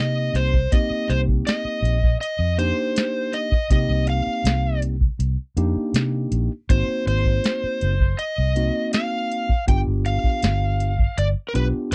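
A soft vintage rhythm box, with its deep kick, crisp snare and metallic hats, sets a straight 4/4 pulse from 0.4 seconds under a brooding, smoky soul blues excerpt, with a round, punchy, foam-muted fingered bass sitting up front beside it. Over a mellow tine electric piano accompaniment, a bright, overdriven slide guitar carries the melody as the harmony moves from Cm9 to Ab7 at 6.7 seconds and G7 at 9.7 seconds. The dry, close sound recalls a 1970s studio.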